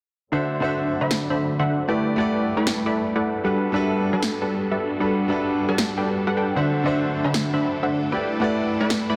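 Over a half-time 4/4 feel, this bright, euphoric future bass fragment sets an up-front, detuned supersaw stab riff, low-pass filtered and dub-echoed, beside a clear concert grand piano accompaniment roughened by vintage 12-bit sampler grit and dub echo, while a bowed string section holds lush vibrato chords in the background under a low-pass filter sweep, a layered, punchy electronic snare arrives at 1.1 s, and the dense, heavily limited mix sits in a moderate hall reverb as D7 and Gmaj9 alternate.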